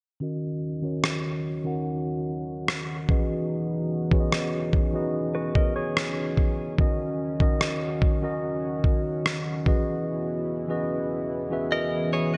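A bright, 1980s-style digital production sits in a moderate plate reverb, while a filter sweep runs across the whole of this short cut from a longer contemporary R&B piece. Its sensual, late-night mood rests on a mellow tine electric piano, heard up front as if through its built-in speakers, and a dark, shimmering chorused pulse-width pad that holds sustained, slow-attack chords with a sub-octave beneath, both passing through a low-pass filter. A dusty soul sampler-style drum kit enters at 1.0 s with a thumpy kick and rim click, compressed and gritty with vintage 12-bit texture and gated reverb. A clean, direct-recorded electric guitar adds brief picked arpeggios at 5.3 s and again at 11.7 s, also filtered and placed up front. The harmony alternates between D#m7 and C#m11/E in an unhurried, straight 4/4.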